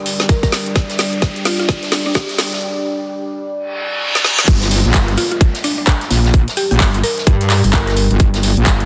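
A dark, detuned analog pad and a deep ambient pad set in the background open this aggressive, bouncy bass house passage in G minor at 129 BPM, swung on the sixteenths, while a filter sweep drives the build-up. A tight electronic kick sits up front, layered with a garage kit of woody snare, metallic hats, handclaps and crash, and a very quiet, dry cocktail kit adds a high-tuned snare, shaker and hi-hat. A round, mellow mallet-like FM pluck carries a short melody through chorus and delay. A riser, reverse cymbal and downlifter carry the music through a break into the drop at 4.5 seconds. There a distorted, overdriven wobble bass arrives up front with sidechain pumping, and the pluck returns at 5.2 seconds. The mix is dense and heavily limited, with light reverb and small room ambience, in a clip cut from a longer track.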